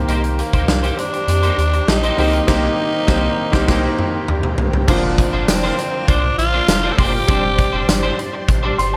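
A breathy, raspy tenor saxophone carries the uplifting, nostalgic melody with vibrato over a 1980s-style pop groove at 100 BPM, backed by a punchy big-room rock drum kit with bright cymbals and tambourine, a round, deep analog bass, a polished grand piano that adds a fill at 8.5 seconds, a slightly broken-up electric guitar riff with chorus and digital delay, and mellow, vintage string-machine violas with phaser sitting in the background under light reverb.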